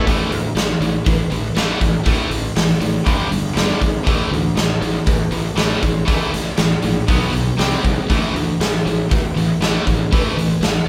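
Hard rock at 119 BPM in A minor, heavy and menacing, this short excerpt cut from a longer piece sets two bright, picked electric guitars on a riff, one overdriven and the other scooped and high-gain, sitting in the background over a growly fuzz-fingered bass with overdrive. An acoustic arena drum kit sits up front with a punchy kick, medium-tuned snare and hi-hat in a big, natural room sound, while the band plays live together with light reverb. The power chords move from A5 to G5 at 3.1 seconds, back to A5, then climb through B5 and C5 before settling on A5 at 8.1 seconds.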